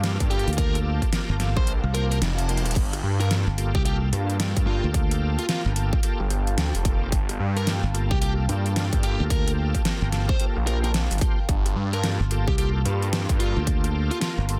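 A swaggering, funky glitch hop excerpt at 110 BPM in G minor, with swing on the 16ths, opens on a Gm9 chord. A smooth, detuned analog pad sits in the background beneath shouting tonewheel organ stabs that carry overdrive, chorus vibrato, a slow rotary speaker and digital delay, both pumping against the sidechain, while a swirling, thick phased saw bass and an overdriven dubstep kit of deep snare, metallic hats, rim click and crash play from the start. A punchy, overdriven electronic kick and a growly, bright fingered electric bass sit up front, a biting lead guitar carries the melody through overdrive and delay, and the kick drops out from 1.7 to 2.8 s as a reverse cymbal sounds in the background and a drum fill hits at 2.5 s, all in a dry, dense and heavily limited mix.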